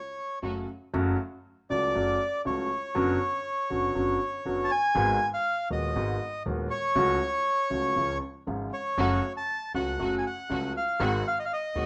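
Melancholic and passionate, this rubato tango excerpt features a reedy, vintage bandoneon singing the melody up front over a concert grand piano with deep bass and audible action noise, a woody, thumpy pizzicato upright bass, and a rich bowed string section with vibrato that stabs briefly at the start and returns at 9.0 seconds, all in a moderate studio reverb.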